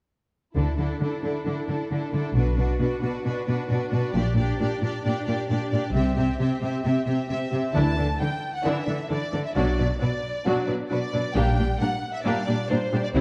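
A straight 4/4 pulse at 134 BPM drives this adventurous, triumphant cinematic string passage in D mixolydian, cut from a longer piece, where a rich, focused violin section carries the melody above a smooth, even second violin line and a distant viola accompaniment, while up-front cello and double bass sections hold the low end, every section bowed with vibrato, and a dark production with moderate scoring-stage reverb gives the Dsus2, Bm, Gm/Bb and C chords a lush glow.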